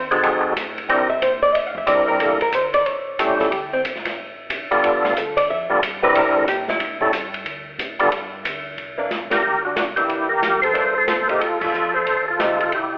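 A clean, compressed hollow-body archtop guitar opens this greasy, swinging soul jazz organ trio excerpt at 182 BPM in C mixolydian, taking a picked solo through 8.8 seconds over a round, mellow organ bass line that sits in the background with light overdrive, chorus vibrato and slow rotary speaker. An up-front, gritty overdriven organ carries the melody with percussive second-harmonic attack, its own slow rotary and chorus vibrato, while an acoustic drum kit with boomy kick, smooth dark cymbals and a rolled-off top keeps the swing. The band hits accents at 9.3 and 11.6 seconds in the closing stretch, all set in a recital-hall reverb with a narrow, telephone-like tone.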